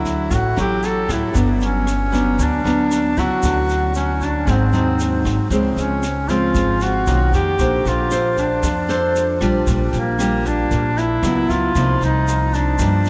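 Bossa nova at 115 BPM with a sophisticated, relaxed mood, this excerpt is led by a clear duduk playing a folk-style melody with scooped notes, set distant in a diffuse ambient delay, over an up-front, fingerpicked nylon-string guitar touched with subtle chorus. A woody, growly upright bass and a brushed jazz kit with a high-tuned snare, punchy kick and rim click hold the groove, while a grainy egg shaker sits in the background from 0.1 seconds. The harmony moves from D major to Bb major at 5.5 seconds through lush seventh and ninth chords, all bathed in a huge, dreamy reverb.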